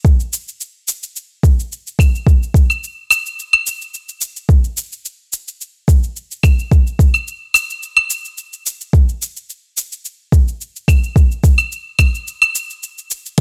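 The soft electronic kick drum sits up front from the very start, setting a relaxed downtempo pulse at 108 BPM in 4/4 with a gentle 54% swing on the sixteenths. Joining at 0.1 seconds, a layered bed of electronic shaker, claves and dark hi-hats shares the front of the mix, sitting lower in level than the kick. The mood is earthy and warm, a short groove cut from a longer piece that stays in one section through its 13.4 seconds. The sound is dry and gritty, with little reverb and only a touch of studio ambience around the drums. The result feels close and tactile, a pared-back rhythm track built entirely from produced electronic percussion.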